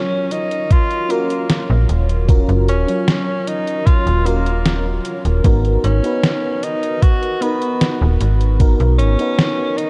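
A tenor saxophone with light vibrato and scooped notes opens this nostalgic, melancholic vaporwave excerpt, its delayed jazz lines floating over a lush FM electric piano and soft pad layer with subtle chorus. A detuned 8-bit drum machine with 12-bit sampler grit adds hi-hat and a medium-tuned snare, and a thumpy, up-front kick enters at 0.7 seconds. A snappy, metallic FM slap bass arrives at 1.7 seconds as the harmony moves from D#m9 to G#m7 at 5.4 seconds, all inside a dreamy cassette-tape mix soaked in cathedral reverb.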